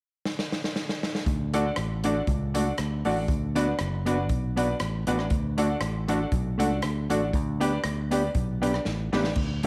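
Upbeat and bouncy, this short ska excerpt cut from a longer piece rides a light swing in 4/4. A swinging big-band drum kit opens with a fill at 0.3 seconds, its punchy kick, medium-tuned snare, rim clicks, hi-hat and crash sitting up front in an acoustic studio room. At 1.3 seconds a fingered electric bass enters with a dark, round, punchy tone, followed moments later by a mellow, clean electric guitar playing fingered accompaniment and a bright upright piano adding stabs. The piano is the standout color: brilliant, woody and worn, slightly detuned, with audible action noise and a long, intimate sustain. The harmony moves through D, Bm, D and G over D, and a second drum fill at 8.9 seconds leads toward the close. A moderate echo-chamber reverb and small-room ambience give the whole a compact, lively space.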